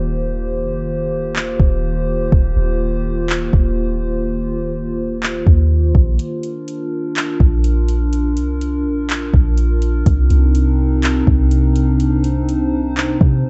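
A warbling, nostalgic pad of detuned square and triangle tones opens this atmospheric cloud-rap excerpt in Eb major, its sustained chords pumping under sidechain and blurred by chorus and reverb, while a deep, round 808-style sine bass sits up front beneath it. At 1.4 seconds a smooth electronic R&B kit arrives with a soft kick, metallic hi-hats and handclaps, re-recorded in a large room, settling into a floating half-time feel at 124 BPM. The dark, warm production moves from Eb6 to Bb at 6.2 seconds and on to Cm7, keeping a dreamy, mellow haze throughout.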